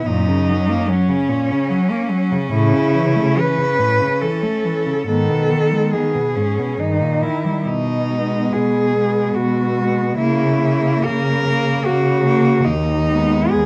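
Classical and lyrical, this excerpt for a cello ensemble in 3/4 moves with uneven, rubato beats and a melancholic, solemn mood. A clear, focused single cello carries the bowed melody up front with vibrato, while a second cello sits in the background with an intense line beneath it, its top smooth. A third cello, close and even, plays the accompaniment with rich vibrato, and a fourth, expressive bass cello joins at 0.1 s, sliding between notes with portamento. The harmony begins on F# and later settles into G# minor, passing through an A#dim/C# before closing on G#m/D#. A moderate large-studio reverb and a dark production give the whole ensemble a sombre glow through the 13.7 seconds.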